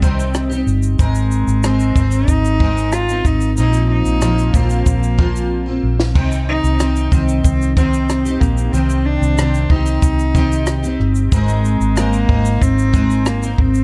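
Carefree yet heartfelt, this acoustic pop fragment sets a bowed cello melody, soft in attack and floating with digital delay, over a double-tracked, full-bodied jumbo steel-string guitar picking out the chords. A round, foam-muted vintage electric bass sits up front beside a compact cocktail kit with a tight kick, high-tuned snare, rim clicks, shaker and dark cymbals, and a drum fill arrives at 5.5 seconds. Light reverb and a dark, warm production wrap the whole fragment as it moves through Cm, Abadd9 and Bbsus2.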